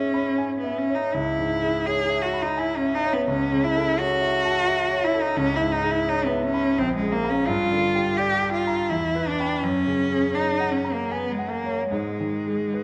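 A rich, bowed cello carries the expressive melody with vibrato, portamento and a soft attack in this mysterious, wistful impressionist classical fragment for cello and clear concert grand piano, whose deep-bassed, long-sustaining accompaniment drifts in rubato 3/4 at roughly 72-88 BPM through chords such as C#m7, F#m7/C#, Gm7, Em7 and F#add9, both instruments up front in a moderate concert hall reverb and tuned to A4 = 439 Hz.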